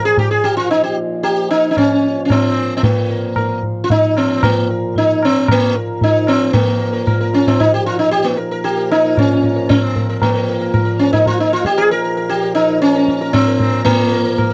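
A bright, buzzing sitar sits up front, its shimmering sympathetic strings carrying the melody of raga bageshri in Bb through this meditative, solemn Hindustani classical excerpt in 7/4 at 114 BPM. A reedy, breathing hand-pumped harmonium holds a low drone underneath, and a high-tuned tabla with a short ring joins at 0.2 s. The dry, close 1970s-style studio sound keeps every part intimate as the tempo speeds up throughout and the music moves into a new section at 6.5 s.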